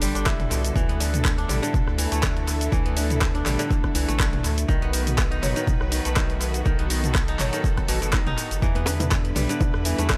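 Afro house at 122 BPM with a gently swung 4/4 groove, spiritual and hypnotic in mood, built on a bright, ringing kora playing arpeggios with dub echo over smooth bowed strings sustaining chords in the background, both pumping against the sidechain along with a round, nasal analog bass. A deep house kit of handclaps, hi-hat, rim click, shaker and toms carries tape echo, while a punchy layered electronic kick enters at 0.3 seconds and tight, high-tuned bongos slip in quietly at 8.8 seconds. Chords move from Csus2 and Dsus2 to B and Em7 in an echo-heavy mix with light small-room reverb, cut from a longer piece.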